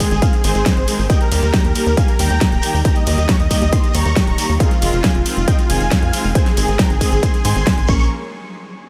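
Uplifting trance at 137 BPM in 4/4, this emotional, soaring drop cut from a longer piece is carried by a huge, detuned supersaw melody with vibrato, colored by cassette-tape grit and tape echo and pumping against a punchy, up-front electronic kick. Dark, woody bowed strings sustain chords beneath, while a tight sequencer bass with a ring-modulated filter pluck drives through a progression moving from Ab to Eb, Fm7 and Bbm. A big-room kit with a huge snare and metallic hats, plus a grainy, distant shekere, fills out a dry, close mix that hits a band accent at 7.7 seconds.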